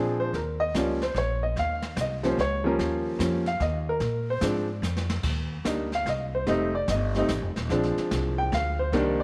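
A clear, smooth upright piano and a dark, thumpy pizzicato upright bass open this relaxed jazz trio waltz together, with a brush kit joining at 0.3 seconds. At 146 BPM in 3/4 with a swung eighth-note feel in Bb mixolydian, the piano carries the melody as a solo across the whole passage, its vintage, short-sustained tone sitting up front. The gut-string bass has a woody, close presence, while the drums stay further back, pairing brushed snare with dark cymbals, hi-hat and a boomy kick. A short drum fill arrives at 4.8 seconds, just before the harmony moves from Bb7 to Cm, then on through F7 and back to Bb7. Light reverb and a small room ambience give the trio an intimate setting in this swinging fragment of a longer piece.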